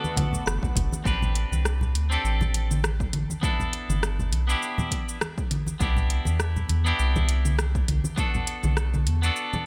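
A round, deep analog bass sits up front in this smooth, wistful sunset chillout excerpt, entering at 0.5 s and holding dark, sustained notes through most of the cut. At 101 BPM in 4/4 with a swung sixteenth feel in A dorian, a deep house drum kit of cabasa, congas, metallic hi-hat and rim click carries an overdriven, up-front edge in a small room, joined by a punchy, layered electronic kick drum with the same grit. A separate set of low-tuned, thick-skinned congas adds close, dry acoustic texture under soft hands. A bright, twangy clean electric guitar plays accompaniment through delay and shimmer reverb. Within the opening second, a lush, detuned sawtooth pad, a barely audible dark nylon-string guitar melody and brief mellow, woody kalimba arpeggios with delay and shimmer reverb sound before falling away. The chords move from Bm7 through Am11, G69 and Cmaj9 before returning to Bm7, set against a digital ambience.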